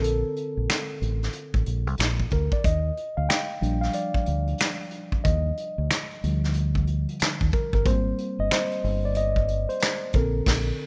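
Relaxed and smooth, this short neo-soul R&B fragment, cut from a longer piece, swings lightly as a mellow, reedy electric piano takes a solo over jazzy major-ninth chords, sounding clean through its own built-in speakers. A deep, round fingered electric bass and a vintage brush kit with dark cymbals, a punchy kick and finger snaps sit up front beside it in a small room. The rough home-demo mix closes with a band accent at 10.5 seconds.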